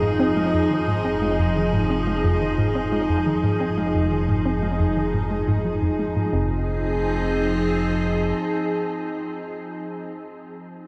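A straight, steady 4/4 pulse underpins this hypnotic, mysterious ambient fragment, cut from a longer piece and soaked in a dreamy, cavernous reverb. Up front, an evolving, morphing wavetable pad holds bright sustained Fm7 chords. A hollow, bouncy square-wave pluck carries a detuned riff through chorus, phaser and tape echo until 6.6 seconds, over a fat, thick analog bass on F1 with a filter sweep, while a very quiet fingerpicked concert harp rings out arpeggios and a resonant stepped-filter texture bubbles in the background until 6.3 seconds.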